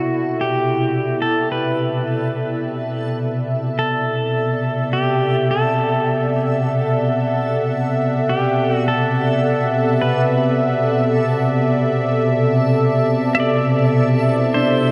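A soft, detuned analog pad sits up front, its sawtooth chords gently blurred by chorus and sustained over a Dadd9 harmony in this peaceful, weightless ambient piece cut from a longer work. Drifting slowly at 53 BPM in 4/4, a clean, twangy pedal steel guitar carries the melody with slide and volume swells, its fingerpicked lines softened by tape echo. Deep in the background, a reversed, granular texture fades in across the whole 14.9 seconds, its dreamy triangle tone bathed in its own reverb and a long release. At 14.5 seconds a ringing acoustic harp slips in with a brief fingerpicked arpeggio, also set far back in the mix. Everything here floats in a vast, echoing space with a huge eight-second reverb tail, and the sound carries a hazy cassette character that lends it a warm, worn intimacy.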